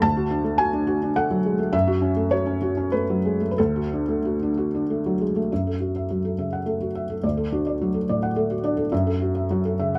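This neoclassical minimalist piano piece, cut from a longer work, has an intimate, reflective mood in F# minor. It moves in a rubato 3/4 at roughly 90-108 BPM, with the tuning set to A4 = 443 Hz. A felt-muted upright piano plays solo across the full 10 seconds, ranging from D2 to A5. Its tone is mellow and muted, with short sustain and audible action noise that makes the instrument feel physically close. The harmony alternates between D and F#m7, and a new section begins at 5.5 seconds. Close, detailed microphones and little reverb keep the piano up front and natural, as though the listener were sitting beside it.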